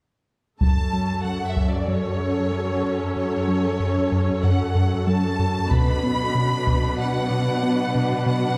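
Relentless and futuristic, this short excerpt from a cinematic hybrid orchestral and electronic film score moves at 94 BPM in F# minor, shifting from F#m to Bm at 5.7 seconds. A lush violin section carries the melody over a bowed viola section with expressive portamento and a smooth, even cello section holding the bass, while a sawtooth-edged, ring-modulated synth bass drives a riff beneath them and an ethereal, wave-folded pad with ensemble chorus drifts in at 1.8 seconds. Heavy-stick taiko drums strike in close bursts from 0.6 and 5.7 seconds, and the whole is heard from further back in a scoring stage with a 1.8-second reverb tail.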